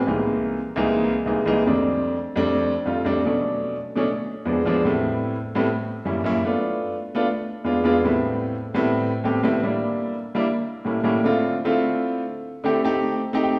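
Jazz solo piano excerpt with a sultry, fiery mood: a warm, smooth concert grand with deep bass and a vintage character sits up front in a wet recital-hall reverb, moving through altered dominant and minor seventh chords before a brief fill at 13.2 seconds.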